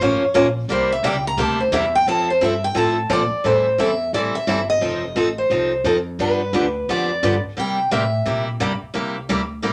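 Acoustic string swing in the jazz manouche style, charming and lively, where a brilliant, up-front picked steel-string acoustic guitar takes a solo through the opening 3.4 seconds and carries the melody with audible finger squeak until 8.4 seconds, over a second fresh-stringed picked acoustic guitar on accompaniment and a woody, thumpy pizzicato double bass on gut strings, all set in a moderate club reverb in this short cut from a longer piece.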